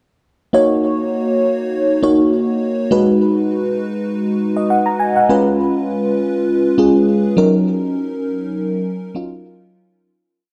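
A lightly swung 4/4 pop feel drives this brief, nostalgic and dramatic piece, in which a solo FM electric piano layered with a soft pad sits up front with a lush, dreamy, mellow tone of fast attacks and decaying notes, pushing its chords in drop-2 voicings with short fills, colored by chorus, phaser and delay and bathed in a wet plate reverb within a dark, warm production before fading out from 7.7 seconds to its close at 10.1 seconds.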